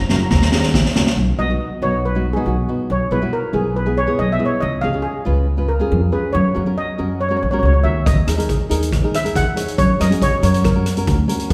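A reverberant concert-hall sound with a 2.0-second decay surrounds this carefree, bouncy calypso, cut from a longer piece. A street-band drum kit plays a fill at the start, its high-tuned snare and boomy kick up front, then drops out at 1.2 seconds and returns at 8.1 seconds. From 1.2 seconds the steel pan takes a solo: a shimmering, metallic double-seconds voice played with medium rubber sticks, sitting up front in the mix. Fingerpicked nylon-string guitar gives full-bodied, deep classical accompaniment, while a dark, woody pizzicato upright bass with steel strings anchors the low end. The harmony moves through chords such as B, E over B and C#, settling back on F#.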